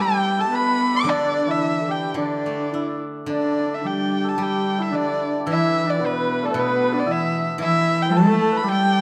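Set in a moderate recital hall reverb, this festive, graceful fragment of Chinese traditional chamber music flows in a free rubato as a dark, intimate erhu carries the melody up front with light vibrato and portamento, while a pure, distant bamboo xiao, a shimmering hammered dulcimer and a gut-string period-style cello play second lines over a silvery, fingerpicked steel-string zither in the background.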